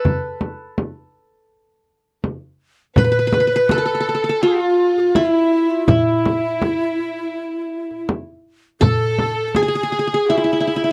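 A straight, stately 4/4 pulse from an up-front frame drum played with soft hands carries this dry, close Arabic maqam ensemble excerpt in a 1970s studio style, where a bright-edged, plectrum-plucked qanun leads the melody from the start, and at 3.0 seconds a clay-shelled darbuka joins with a breathy, reedy ney in the background and an intimate bowed violin section with light vibrato, both playing second lines.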